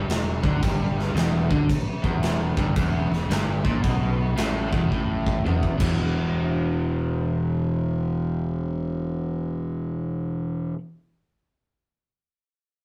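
Driving and raunchy, this short cut from a longer blues rock and southern rock piece moves with a swung four-beat feel in the manner of a power trio. A crunchy, overdriven electric guitar carries the riff throughout, picked and double-tracked, sitting up front in the low register around an E5 power chord. Beneath it, a fingered electric bass adds a growly fuzz tone, played direct and amped with overdrive, and runs nearly the full length alongside the guitar. A big acoustic rock kit with a punchy kick, medium-tuned snare, toms and crash cymbal drives the first half from up front in a natural, roomy sound, closing its part with a fill from 4.9 to 6.0 seconds before dropping out as the next section begins. The whole take has the rough feel of a rehearsal-room recording, with moderate reverb adding a touch of space.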